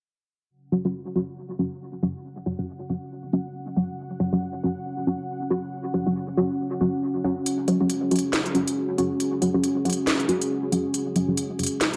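Brooding and heavy, this deep dubstep excerpt moves at 138 BPM with a swung half-time feel, as muted, detuned sawtooth chord stabs with a fast pluck and sub octave, phaser and dub echo, open at 0.7 s, a dark, moody analog pad with slow-attack chorused chords settles in at 1.0 s, and an up-front garage kit of cracking snare and crisp hi-hats arrives at 7.5 s, all within a moderate spring reverb.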